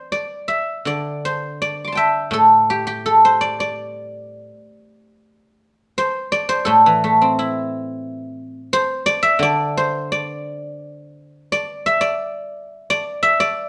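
A solo guzheng carries this short passage of Chinese traditional music, its ringing, silvery tone sitting up front in the sound. The mood is pastoral and elegant, moving in a rubato 2/4 feel that drifts between roughly 77 and 90 BPM in D shang mode. Played with fingerpicks, the acoustic instrument spans a broad range from A2 up to D6. The music shifts into a new section at 5.3 seconds and continues to the end at 13.7 seconds. A moderate studio reverb gives the performance a sense of a live room, and the clip is cut from a longer piece.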